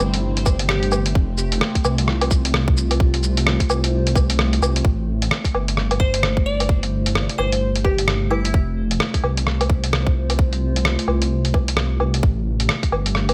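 A melancholic, ghostly future garage passage cut from a longer piece opens on a warbling, nostalgic pad with chorus, phaser and sidechain pumping, a deep, beating detuned saw bass that also pumps, muffled, pitched-down sampler drums with cabasa, hi-hat, rim click and woodblock, a faint reversed granular swell, and a brief glassy, crystalline wavetable pluck with chorus and tape echo. A tight, layered electronic kick enters at 0.5 seconds and sits up front, briefly dropping out just before the second section begins at 4.8 seconds. The pluck melody returns from 6.0 to 8.5 seconds over swung sixteenths and a slow minor sway between two chords, all set in light digital ambience.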